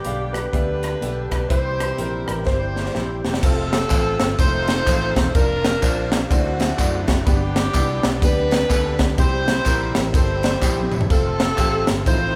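A moderate recital-hall reverb gives this short cut from a longer uptempo gospel piece a churchy, spacious sound, soulful and reverent at 125 BPM in 4/4 with a swung eighth-note feel in F major. A warm, present saxophone section carries the melody throughout with vibrato and a soft attack in jazz style, joined for the first 3.2 seconds by a very quiet concert grand piano with deep bass. A clear, woody upright piano accompanies with audible action noise, while a gritty, overdriven tonewheel organ holds very quiet sustained chords through a slow rotary speaker and chorus vibrato. The crisp fusion drum kit sits up front with a punchy kick, a high-tuned snare and a pumping small-room sound, and a round, dark fingered electric bass anchors the low end. Distant tambourine, maracas and group handclaps join at 3.4 seconds as the harmony moves from F through F7 and D9, and drum fills mark the turns at 2.5 and 10.6 seconds.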